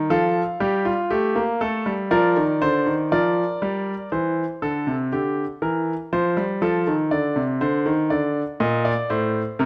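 A bright grand piano carries this short baroque-style three-part fugue alone, its brilliant, polished tone sitting up front with long sustain and the audible noise of its action close at hand. The mood is joyful and lively, moving in a straight, steady four-beat metre. The close, detailed microphones give the playing an intimate, present quality, while a moderate recital hall reverb adds air around each note. The harmony moves from F through B-flat to C7, returns to F, and settles on a D5 chord near the end, with the second section beginning at 4.1 seconds. Cut from a longer piece, the passage spans from low in the bass up into the treble of the keyboard.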